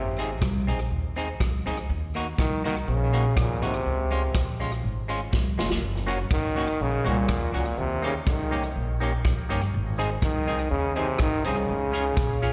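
A straight 4/4 ska groove from a punchy vintage drum kit with rim clicks and a woody, growly pizzicato upright bass drives this cheerful live excerpt, as a brilliant, up-front trombone leads with light vibrato and slapback echo over a dark, clean semi-hollow guitar with warbly pitch drift, and after a drum fill at 5.3 s a fat, lightly overdriven tonewheel organ adds stabs in the background from 6.1 s, the whole band heard through the venue's PA in recital-hall reverb.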